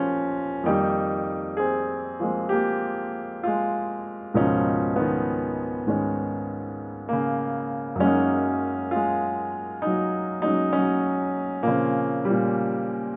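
A jazz ballad in an intimate, smoky mood, this short excerpt from a longer piece features a warm, up-front baby grand piano playing alone with light reverb for its full 13.2 seconds, spanning low to high registers as it moves through rich extended chords like Fm11, Db13 and Gb69 over a gentle swing.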